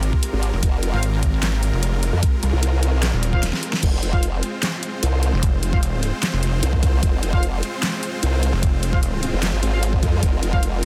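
Two overdriven, chorused wobble basses sit up front, one pulsing, heavy and detuned and the other sweeping through a formant filter, in this aggressive, menacing heavy wobble dubstep drop in F minor at 150 BPM with a half-time feel, driven by a knocking, overdriven electronic kick and a layered kit with a huge snare, handclaps, hi-hat, crash and a drum fill at 3.4 seconds, while huge, lush, bright supersaw chords pump beneath, a clear, close-miked classical brass ensemble adds stabs through a tape echo, and a warbly, nostalgic, lo-fi pad hums darkly in the background until 3.8 seconds, all in a dry, dense, heavily limited modern mix.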